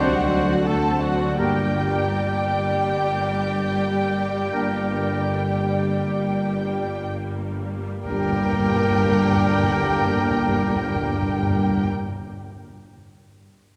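Rubato in a slow 4/4 at 32-46 BPM, this elegiac, solemn classical passage in G minor slows through its first 8.1 seconds as a lush, distant violin section sings the melody over a D7 resolving to G minor. Second lines come from a smoothly bowed violin section in the background, an airy large flute ensemble with crisp attack, a warm oboe with light vibrato and a dark, roomy clarinet. Beneath them sit a very quiet viola section, mellow sustained French horn chords, ringing thumb-plucked harp arpeggios, bright trumpet stabs, a close-miked tuba, a rich double bass section and a cello section with portamento, all in a concert-hall reverb, and round, dry soft-mallet timpani join them at 8.1 seconds.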